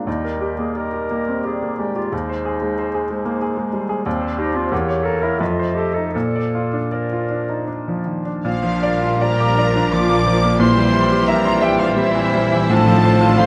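Moving in a rubato three-four lilt, this passionate, lyrical romantic movement for piano and orchestra opens with a bright, brilliant baby grand carrying the melody up front, its action noise audible, over a very quiet bassoon, with a hollow flute in the background and a distant, soft-attacked clarinet weaving second lines. Dark horns slip in at 8.4 seconds, and at 8.5 seconds the rest of the orchestra arrives: a lush studio violin section joins the piano on the melody with expressive vibrato, while distant symphonic violins, smooth violas and cellos, a warm double bass section, the horns, mellow trombones and trumpet stabs fill out the harmony. Close, detailed microphones and light reverb keep the sound intimate, and the passage is cut from a longer piece.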